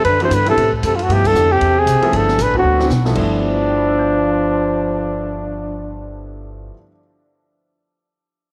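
A soft-attacked flugelhorn with light vibrato and scooped notes carries the melody up front through tape echo, above a breathy, distant trombone second line, in this relaxed, playful fragment of fast small-group swing and bop at 232 BPM in G mixolydian, where woody pizzicato upright bass, a natural-sounding baby grand piano and an open drum kit with dark cymbals and a boomy kick, which plays a fill from 2.6 seconds and stops at 3.2 seconds, share a small room with light reverb.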